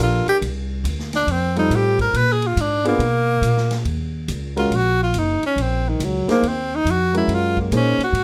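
Intense yet cool, this short modal jazz excerpt swings at 140 BPM in 4/4, settling into Eb dorian from 3.9 seconds after opening on a suspended C13sus4 and a Bb7 chord. A clear tenor saxophone carries the melody as an up-front solo throughout, its soft attack and jazz vibrato giving the line a poised, singing quality. Beneath it, a dark upright piano adds mellow, woody accompaniment, while a pizzicato upright bass with steel strings sits up front, thumpy, woody and dark in tone. The swinging big-band drum kit of hi-hat, ride cymbal, snare and boomy kick sounds distant and roomy, with a medium-tuned snare and a rolled-off top that keeps it soft behind the band. A moderate small-room reverb lends the ensemble a close, intimate space, and the piece is cut off at about 8.2 seconds as part of a longer performance.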